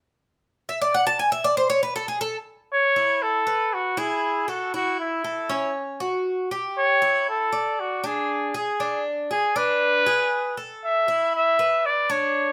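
A straight, even four-beat pulse carries this sunny, relaxed Latin piece, cut from a longer work. A Cuban tres opens alone, playing picked arpeggios whose bright, metallic double strings, some doubled at the octave, sit up front in the mix. At 2.7 seconds a breathy trumpet enters with the melody, its soft attack, vibrato and whispered, intimate vintage tone giving a pop-style solo voice that sits slightly louder than the tres. From there the tres keeps arpeggiating beneath it through a harmony that moves from A and E through C#madd11, A7 and D before settling on Asus2 and Bmadd9. Both parts play on until 12.5 seconds in a moderate studio reverb.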